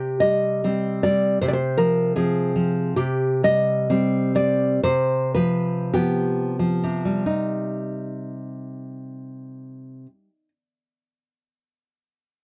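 A full-bodied, fingerpicked nylon-string guitar plays alone up front in this intimate, passionate romantic piece for solo classical guitar in C minor, moving in a rubato 2/4 between 43 and 80 BPM and slowing from 2.2 to 7.3 seconds as the harmony moves from Cm through Fm/C and G7/C back to Cm, with audible finger squeak and a deep classical tone set in the dry, close sound of a 1970s-style studio touched by light reverb, before the guitar stops at 10.5 seconds in this cut from a longer work.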